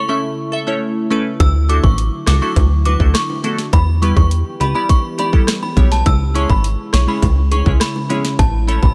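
Summery and sunny, this dancehall excerpt opens with a ringing, inharmonic synth chime melody colored by tremolo and tape echo, over a dark, ethereal glassy FM pad with sidechain pumping and a crystalline, bright glassy wavetable pluck accompaniment. At 1.4 s a punchy, funky plucky analog bass and an up-front island pop drum kit with tight kick, sharp snare and metallic hats arrive, joined by very quiet, distant, low-tuned bongos. The chords move from A through Dadd9, Em and C#m back to A, set in a digital ambience.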